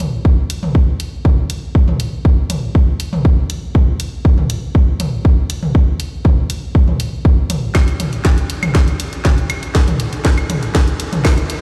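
A straight 4/4 techno pulse at 120 BPM drives this melancholic, hypnotic fragment, with a punchy, up-front electronic kick entering at 0.2 seconds beneath a layered house drum kit of claves, hi-hat, cracking snare and toms, whose hats, toms and percussion pump against the sidechain. The whole passage works as a build-up, and a drum fill takes over from 7.7 seconds to the close at 11.6 seconds. The kit and kick sound as if they were played through a big sound system in a bare stone room, carrying light reverb.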